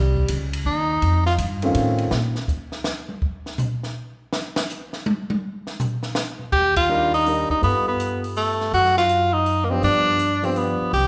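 Heard in a church-like hall with moderate reverb and a faint mains hum, this relaxed, playful small-group swing and bop passage in 3/4 at 164 BPM opens on a clear, up-front tenor saxophone with light vibrato and scooped notes over woody pizzicato upright bass, gives way to a drum solo on a dry cocktail kit with dark cymbals, a high-tuned snare and a punchy kick from 2.1 to 6.5 seconds, then brings back saxophone and bass joined by warm grand piano, with a band accent at 6.7 seconds.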